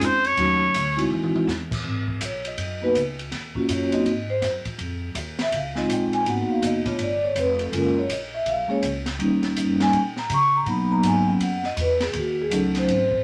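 A moderate studio ambience frames this moody, late-night small-group swing and bop recording, cut from a longer piece. A clear, vintage trumpet with vibrato sings up front for a brief opening solo phrase that ends at 1.1 seconds. A close-miked, dry vibraphone enters at 0.4 seconds, its metallic, ringing chords struck with medium mallets and shimmering with slow motor vibrato, while a woody pizzicato upright bass and an acoustic kit with a high-tuned snare and boomy kick play throughout, lower in the mix, the drums adding a fill at 1.1 seconds.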